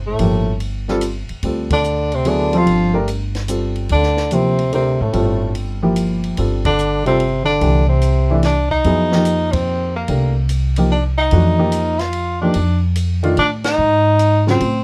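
A dark, lightly reverberant production frames this short modal jazz cut in G dorian, a searching, intense waltz at 146 BPM in 3/4 with a swung eighth-note feel. The upright bass opens the piece, its woody, thumpy pizzicato on steel strings sitting up front, while a mellow tenor saxophone carries the solo melody in subtone, scooping into notes with a distant, roomy quality. Beneath it a warm bass clarinet plays a second line with vibrato and a punchy attack under a smooth top, also scooping into notes, before dropping out at 8.7 seconds. A baby grand piano accompanies with intimate, short-sustain chords and audible action noise, moving from G9sus4 to Cadd9 and, once the second section begins at 8.9 seconds, to F13sus4 and finally Ab5. A compact cocktail kit sits low in the mix, dry and natural, with dark cymbals, a high-tuned snare and a tight kick alongside hi-hat and ride, and the band strikes accents together at several points along the way.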